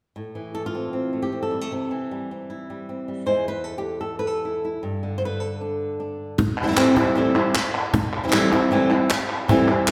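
In free time, this dramatic, fiery flamenco fragment in A minor opens with an up-front, fingerpicked acoustic guitar alone, finger squeak audible, moving through Am and C, a chordless passage and G5. At 6.4 seconds the music shifts to Am7 as a woody cajon enters, close and dry with faint snares and hard hands, joined at 6.6 seconds by crisp, distant palmas hand claps. The recording has the long, wet reverb of a church or concert hall.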